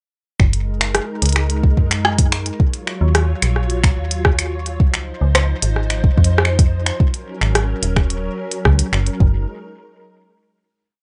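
This intricate and wistful IDM piece in Gb lydian opens at 0.4 seconds with a soft, tape-warm electronic kick playing a broken pattern, alongside a glitched, ever-changing kit of finger snaps, clicky closed hats and rim clicks, while a metallic FM bass with fast-attack, decaying notes sounds long gliding low tones. A silky vintage string machine joins at 0.6 seconds with slow-attack sustained chords coloured by phaser and ensemble chorus, moving from Gb69 through Ebm9, Dbmaj9 and Ab9sus4 at 109 BPM in a straight 4/4. The groove gives way at 9.2 seconds to a final Gb69 chord, and the piece has the light reverb and dulled top end of a rough home demo mix.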